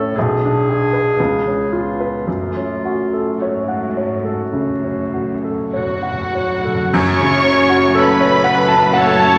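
A warm baby grand piano carries the melody up front from 0.0 s in this brooding, tragic romantic movement for piano and orchestra, joined at once by a mellow solo clarinet on a second line and soft-attacked French horns holding sustained chords in the background. Within the first moments the strings settle in: a lush violin section shares the melody with expressive vibrato, a second violin section and a clear, distant viola section fill out the middle, and cellos and a smooth double bass section anchor the low end, all in F# minor at a slow, rubato 48-61 BPM in 4/4. The harmony passes from G#dim/B through C#7 to F#m, and at 2.3 s calf-headed timpani enter with a fill alongside very quiet, bright cymbals and concert bass drum. At 5.7 s an airy flute section and a roomy solo oboe add further second lines, while a barely audible tuba reinforces the bass near the close, where the ensemble lands a collective accent. 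The whole is bathed in the wet reverb of a scoring stage, and the passage is cut from a longer piece.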